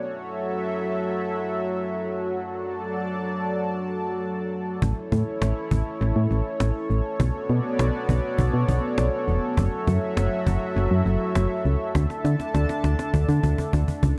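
This synth-pop excerpt opens with a chorused pulse-width pad holding sustained chords, its slow-attack, shimmering retro tone sitting up front and moving from F#m7 through D/F# at a steady 101 BPM in 4/4. At 4.8 seconds a solid FM bass and a cajon enter together, adding to the nocturnal, driving mood. The bass is punchy and round, a dark digital voice with a fast, decaying attack placed up front in the mix. The cajon is snappy and dry, played with hard hands that bring out its snares, and its tape echo adds to an echo-heavy mix with light reverb and studio ambience. The harmony passes through A, Bm7 and back to F#m7 before the cajon plays a fill from 11.9 seconds over a closing Dsus2.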